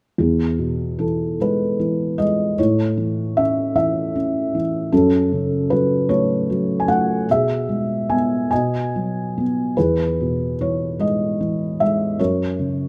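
A felt-muted upright piano, dark and intimate with audible action noise, plays alone from 0.2 to 12.9 seconds in this peaceful, lyrical classical fragment in E major, moving in a rubato 6/8 at about 48-52 dotted-quarter beats per minute through chords of E, A, F#m, E/B, B, back to E and finally F#, captured up front by close, detailed microphones with light reverb.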